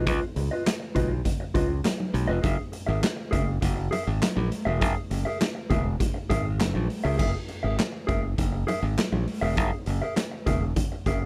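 A clean, dark electric guitar and a growly, bright fingered bass open this gritty, playful funk excerpt together, over a Db9 chord that moves to Gb9 at 2.4 seconds. The bass sits up front and direct, its fingered tone cutting through in the low register beneath the compressed, mellow guitar. A raw garage drum kit joins almost at once, its acoustic sound saturated and captured in a bright stone room with a pumping character, combining a punchy kick, a medium-tuned snare, hi-hat, crash cymbal and handclaps. Congas with a thin skin and hard hands add a vintage, band-limited layer in the background. The straight groove moves into a new section at 7.2 seconds, and the mix stays dry and close throughout.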